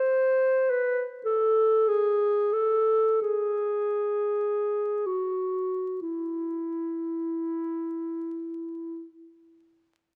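A mellow solo clarinet opens the recording at once, placed up front with a smooth top as it sings a serene, lyrical line between E4 and C5. The piece is a free, expressive classical work for unaccompanied clarinet in E major, set in a very slow 6/8 of roughly 16 to 39 BPM counted in dotted quarters, with a rubato feel and tuning at A4 = 439 Hz. Over the first 6.0 seconds the tempo slows, and then a new section begins. The clarinet plays until 9.2 seconds, and the wet recital hall reverb carries its tone into the closing moment. A vinyl crackle sits under the performance, giving this short excerpt from a longer piece a gently aged character.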